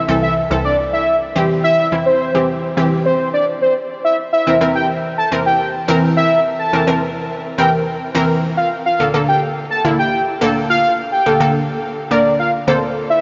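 A fat, detuned sawtooth lead carries the melody from the first moment of this bittersweet yet confident pop fragment, its chorus and delay sitting up front over a punchy, bright unison pluck drenched in lush chorus, while the chords move from Am/C and C to C7 at 3.9 seconds and Bbmaj7 at 8.4 seconds, all inside a dreamy, reverb-soaked mix with a huge ambient tail and softened highs.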